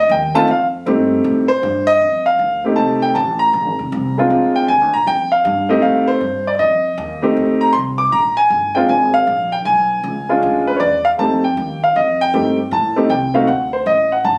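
A swung 4/4 pulse at 157 BPM drives this sophisticated jazz piano trio cut from a longer piece, sitting in F mixolydian and moving through F7, Bb7, Bdim7 and Am7b5 before settling on D5. A warm, natural grand piano carries the melody up front, ranging from Ab3 to D6, while a woody, growly upright bass with steel strings plays pizzicato in its dark low register underneath. Captured on a phone in the room, the sound has a light club reverb and compression. After 2.0 s, the piece moves into a new section that runs to the end at 14.4 s.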